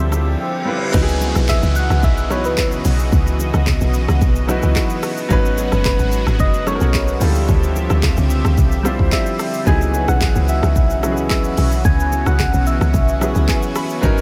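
A dreamy, reverb-soaked mix with a huge ambient tail opens this hypnotic, deep amapiano excerpt in C# minor at 110 BPM in straight 4/4. A reverse cymbal and downlifter sweep in at 0.1 seconds alongside a brief grand piano fill and a short break, and then the drop lands at 0.9 seconds, where the deep, round log drum bass enters up front with its fast-attack, decaying FM punch and dark noise layer. An electronic, layered deep house kit drives the groove with a deep kick, dark hi-hats, handclaps, rim clicks, shaker and crash, while very quiet bongos and congas add soft-handed acoustic color from a small room. A polished, present grand piano carries the accompaniment with a subtle chorus, and a smooth, detuned sawtooth analog pad holds sustained chords, its moving notch and sidechain pumping giving it a breathing motion. From 1.5 seconds a gentle, keys-like struck synth lead sings the melody with vibrato, phaser and diffuse ambient delay, over harmony that drifts through lush minor-eleventh chords, Dm11, C#m11 and G#m11, before the piano adds another fill near the end.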